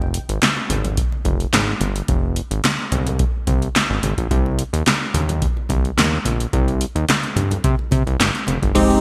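A fat, detuned sawtooth bass opens this slick, danceable stretch of early-eighties boogie funk at 108 BPM in a straight 4/4, sitting up front with a fast attack, sustained notes and a filter sweep that keeps its thick tone evolving. Low-tuned acoustic congas with a bright, thin skin play from the start, set back in a small room, and an electro analog drum machine joins at 0.1 seconds with a deep kick, punchy snare, handclaps, metallic hi-hats and a crash cymbal. The drums carry gated reverb and a short room on the snare, clap and hats, with a tape-warm, electronic character up front in the mix. The harmony moves from Fm to Cm at 4.3 seconds. A funky, punchy polysynth comp with a filter pluck, moving notch and chorus cuts in at 8.7 seconds, just before this piece of a longer track ends, all within a bright 1980s-style digital production with light reverb.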